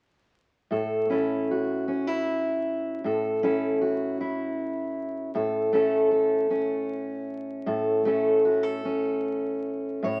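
Reflective and melancholic, this brief rubato folk fragment in 6/8 features a lone fingerpicked steel-string acoustic guitar, dark and up front with an auditorium body, playing from 0.7 to 10.2 seconds in a moderate studio room and heard through the crackle of a very old 78 rpm record.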